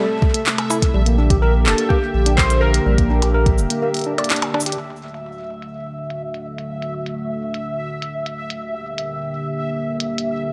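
A deep, round sub bass sits up front from 0.9 to 3.7 seconds in this melancholic, cerebral IDM excerpt, beneath a dark, detuned analog pad with chorus, a clean tine electric piano playing arpeggios through delay, a resonant, bubbling texture of random filter steps, a soft electronic kick, a tape-warm glitchy kit of clicky hats, cabasa, handclaps and percussion blips through low-pass filters and digital delay, and a warbling, nostalgic lo-fi synth melody with ring modulation, in an echo-chamber room, with a break at 3.8 seconds before a filter sweep runs over the drums.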